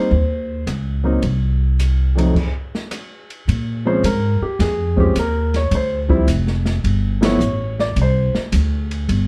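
A relaxed swing in 4/4 at 107 BPM, with a lilting eighth-note feel, opens this short cut from a longer jazz piano trio piece, tuned a little below standard pitch at A4 = 436 Hz. The upright bass, woody and up front with steel strings, plays pizzicato in its low register, while the drum kit sits lower in the mix with dark cymbals, a medium-tuned snare, a boomy kick and a rolled-off top, using ride, hi-hat, crash, rim clicks, kick and snare. Leading the melody, the concert grand has a warm, intimate tone with deep bass, long sustain and audible action noise, opening on a rootless Ab voicing. The band drops out for a stop from 2.3 to 3.5 seconds, then moves into a new section through Bbm9, Dm7, Gsus2 and Csus2 and lands together on a band accent at 7.1 seconds. Moderate studio reverb gives the trio a natural sense of space, as if heard from further back in the room, keeping the mood easy and unhurried.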